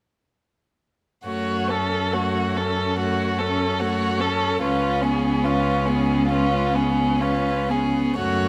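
Classical string quartet excerpt: a slow, melancholic and solemn romantic movement in F# minor at 59-75 BPM in a rubato 4/4, tuned to A4 = 443 Hz, where from 1.3 s a smooth, close first violin sings the melody above an expressive second violin line with portamento, a focused viola accompaniment and an even, up-front cello bass, each single player bowing with vibrato and a rich tone as the harmony moves from F#m to C#7 at 4.6 s in a moderate recital hall reverb.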